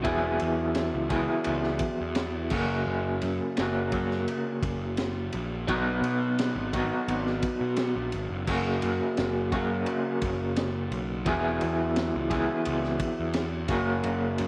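A straight 4/4 pulse carries this trippy, kaleidoscopic psychedelic rock excerpt, where a bright, twangy electric guitar through a small old amp plays an up-front tremolo riff over a round, fuzzy, overdriven picked bass and a crunchy, gritty breakbeat drum kit with a punchy kick, high-tuned snare and dark, rolled-off cymbals, the harmony cycling through Eadd9, F# and B in a light small-room reverb.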